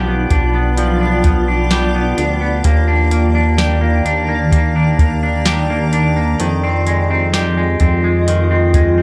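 This melancholic, haunting dream pop fragment opens at once with a blurred granular cloud pad holding sustained chords, a clean electric guitar picking bright, twangy arpeggios, and a chorused synth bass. The drums of a soft vintage rhythm box join at 0.3 s, with a deep kick, crisp snare, metallic hi-hats and tambourine that sound tape-warm and re-recorded in a large room. The bass, built from pulse and sawtooth waves with a fast plucked filter, sits up front with a glossy, saturated edge. The guitar shares the foreground, lightly thickened by subtle chorus and delay. Behind them the mellow, detuned pad drifts through its own reverb as the harmony moves from G7/B to Ebmaj7 at 2.6 s and Fm9 at 6.4 s. At a slow 64 BPM in straight 4/4, tuned to A4 = 439 Hz, the mostly dry, dark and warm production keeps the mood melancholic.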